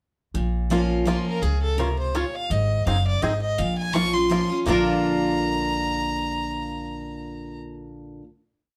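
A rustic, driving bluegrass piece in 3/4 at 166 BPM with a swung feel, where a bright, full-bodied picked acoustic guitar alternates bass and strum with bass runs, a woody, growly upright bass plays root and fifth with walk-ups, a twangy banjo adds three-finger rolls and off-beat vamping from 0.7 seconds, and a clear, earthy fiddle with light vibrato carries the running-eighth-note tune up front from 1.1 seconds, all played live in one room with moderate studio reverb before the band settles onto a final Bb chord at 4.7 seconds.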